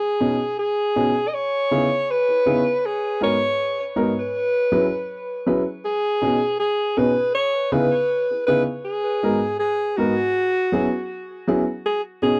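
A lightly swung 80 BPM reggae groove in 4/4 carries this tender, smooth piece in B major, where a breathy alto saxophone with light vibrato and tape echo sings the pop-style solo melody from the start, while a dark, boxy grand piano enters at 0.2 s to voice a B6, C#m7, G#m7, F#7sus4 progression that cycles twice, heard in a dry, close 1970s-style studio recording with moderate booth ambience.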